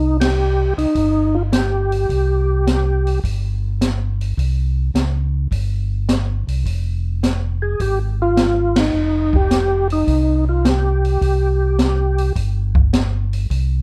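Soul jazz organ trio in C minor, swinging at 105 BPM in 4/4 with a soulful, late-night mood and a dark, warm production. A percussive tonewheel organ carries the melody between Eb4 and Ab4, its full, lightly overdriven tone shaped by second harmonic percussion, chorus vibrato, a slow rotary speaker and plate reverb; it plays from the start to 3.2 seconds, then returns at 7.6 seconds. Underneath, a mellow tonewheel organ holds the bass line from F1 to Db2 throughout, round and clean with a touch of key click through its own slow rotary speaker. An acoustic jazz kit in a small room plays hi-hat, ride, snare and kick up front in the mix, with dark cymbals, a high-tuned snare, a boomy kick and a rolled-off top. The band hits accents together at 0.1 and 8.7 seconds as the harmony moves from Cm to Fm7 and settles on C5 in this short passage cut from a longer piece.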